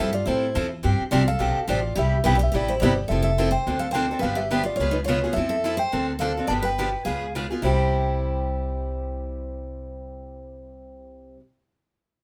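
From the first moment, a mellow tine electric piano carries the melody over two picked steel-string acoustic guitars and a plucked upright bass in this swinging, charming slice of acoustic string swing in the jazz manouche style, cut from a longer piece. The electric piano sounds clean and direct, while one bright guitar weaves a second line beneath it with an auditorium-like character. The other guitar, up front and boxy with fresh strings, handles the accompaniment, parlour-sized in character, with audible finger squeak. The woody, dark pizzicato bass sits prominently alongside it, and the quartet plays together throughout the 11.4 seconds in a moderate studio reverb. The harmony opens on Fmaj9, G9sus4 and Cmaj7, then circles through Fmaj7, Dm7, G7 and Db7 twice before settling on C at 7.6 seconds.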